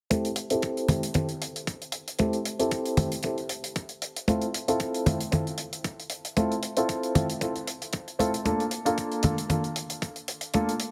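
Warm, close and dry hard-handed congas feature in this cosmic, sensual nu-disco excerpt at 115 BPM in 4/4 with a light 55% swing on the sixteenths. A dark, mellow grand piano sits up front and carries the accompaniment between Bb3 and A4, intimate and natural with audible action noise. The piano is treated with sidechain pumping, a low-pass filter, dub echo and a filter sweep that runs through the whole passage. A thumpy, sampler-style electronic kick with a tape-warm, small-room character and an airy, polished acoustic hi-hat fill out the groove. The harmony moves from Am7 to Cadd11 at 4.3 seconds and Bbmaj7 at 8.5 seconds, all within light studio reverb and a heavily compressed, radio-like sound.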